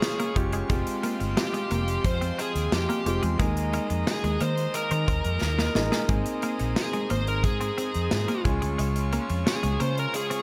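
Moody and nostalgic, this 1980s-style pop excerpt moves at 89 BPM in a straight 4/4 in F minor, with the chords shifting from Db through Fmadd9, Ebsus4 and Abadd9 before returning to Db. A bluesy, distorted lead guitar carries the melody up front, while a punchy, round bass, dark and foam-muted, anchors the low end from 0.4 seconds. The polished studio drum kit, with its tight kick, medium-tuned snare, hi-hat and tambourine, sits forward in the mix under gated reverb and breaks into a fill between 5.4 and 6.1 seconds. Behind them, a deep-bassed concert grand piano and a very quiet, double-tracked cranked stack guitar fill out the accompaniment, and a twangy, compressed twelve-string electric guitar picks a riff in the background with subtle chorus from 0.2 seconds. A pipe organ's cornet stop, nasal with a baroque voicing and a touch of chiff, holds sustained chords above it all, and the whole mix is set in light reverb.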